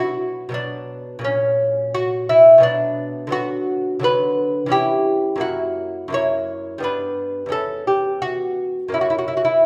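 A solo lute, fingerpicked on gut double strings with some octave-doubled courses, plays a delicate, flowing baroque-style dance in 3/4 at 86 BPM with a rubato feel, settling into B minor and reaching a closing F# at 8.9 seconds, heard up front in a reverberant recital hall in this brief excerpt cut from a longer piece.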